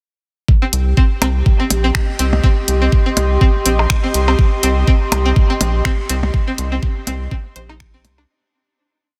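A lightly reverberant, clinical sound frames this short minimal techno piece in C minor, running at 123 BPM in 4/4 with a 56% swing on the sixteenths and a cool mood throughout. An up-front, knocking four-on-the-floor kick, layered and re-recorded in a small room, drives the groove from 0.5 seconds, joined by an overdriven analog drum machine playing closed hats and finger snaps on the backbeat. A rubbery, nasal square-wave bass sits up front with tube saturation and sidechain pumping, holding a dark off-beat line between Bb1 and C2. Above it, a twangy, string-like resonator pluck repeats a 5-step loop that drifts against the bar, carried by lush chorus and analog delay, while an airy, breathy pad with ring modulation and detuned oscillators slowly shifts chords over a long release. Tape-warm clicks and blips in cross rhythm sit in the background under a diffuse ambient delay, and the whole piece fades out from 5.7 seconds to its close at 8.3 seconds.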